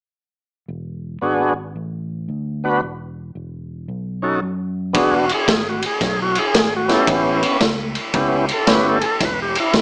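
A round, amped fingered bass opens this rollicking, laid-back electric blues shuffle at 0.7 seconds, swinging at 113 BPM in E mixolydian and sitting low in the mix. A thick, lightly overdriven tonewheel organ with a slow rotary speaker joins up front at 1.2 seconds, moving through E7, Bm7/A and B7 with a brief chordless passage. A gritty garage drum kit with a boomy kick, ride cymbal, medium-tuned snare and rolled-off top kicks in at 4.9 seconds as the music shifts to E7 and A7, all set in a moderate club reverb with a small-speaker sound.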